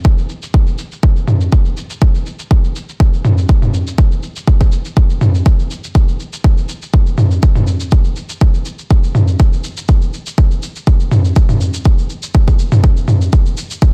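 House groove at 122 BPM in 4/4, with a light swing on the sixteenths giving a hypnotic, earthy pulse across this short cut from a longer piece. An overdriven electronic kick drum sits up front and runs throughout, its deep, layered body re-recorded in a large room. Electronic shaker and toms play alongside it for the full 13.9 seconds, also overdriven and layered, sitting a little lower in level, with a low-pass filter dulling the snare, percussion, toms and room sound into a muffled haze. The two drum parts carry the whole passage as a single unchanging section. The sound is dry, dense and heavily limited, with a modern master.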